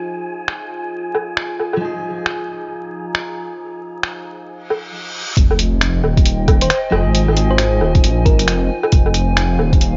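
Muffled and crackling with vinyl noise and light reverb, this ghostly, rainy future garage cut in F minor sways at 135 BPM with a swung 16th-note feel. A slightly broken-up electric guitar and a warbling, nostalgic tape-like pad with chorus, both pumping from sidechain, sit over an airy, wind-like tuned noise texture, while a compressed, pitched-down sampler-style kit of finger snaps, hi-hat and woodblock ticks up front through low-pass filters. After a reverse cymbal and sub drop arrive at 4.7 s, an overdriven soft electronic kick and a menacing, detuned saw bass with a saturated filter swell hit at 5.4 s, and a round, tine-like thumb-piano pluck with chorus and delay drifts in the background from 6.6 s.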